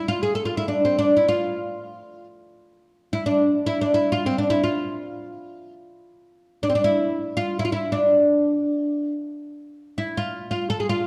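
Hypnotic and full of longing, this short passage in the Arabic maqam tradition unfolds in free time, drifting along with an unmeasured pulse. A single oud carries the music alone from 0.0 to 11.1 seconds, its plectrum-plucked double strings giving each note a woody, bright edge over a deep body. The fretless instrument moves within a compact span from C4 to A4, and it sits up front in the mix. A wet recital hall reverb with a 1.4 second decay lets the strings bloom into the room, while the overall production leans dark. Heard as a fragment cut from a longer piece, it feels like a glimpse into an ongoing, inward meditation.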